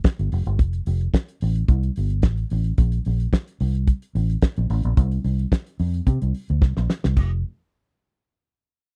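A joyful, glamorous disco groove at 110 BPM in a straight 4/4, cut from a longer piece and captured as a dry, close 1970s-style studio recording with little reverb. A damped acoustic drum kit sits up front with a fat snare, tight kick, hi-hat and dark, rolled-off crash cymbals, alongside a round, foam-muted fingered electric bass that is amped and dark, moving between F1 and C3. A drum fill runs from 6.6 to 7.2 seconds, a new section begins at 7.2 seconds, and the drums stop at 7.3 seconds with the bass following at 7.4 seconds.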